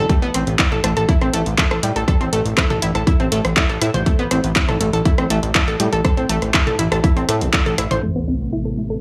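Cinematic and dramatic, this melodic techno excerpt moves at 121 BPM in a straight 4/4 in A minor, built over an Amadd9 chord. An up-front analog pluck spins arpeggios from the start, its round, vintage sawtooth tone warbling through chorus and tape echo, with a filter sweep and sidechain pumping. Beneath it a fat, detuned sawtooth bass holds the low end with the same pumping, while a punchy, layered electronic kick and a house kit of handclaps, hi-hat, rim click and toms drive the groove up front. The kick drops out at 7.6 seconds and the kit at 8.0 seconds. At 8.0 seconds an impact arrives as a lush unison pad with a slow attack and long release enters in the background, joined by a distant electronic sub drop. A light reverb and a low-pass filter shade the overall sound.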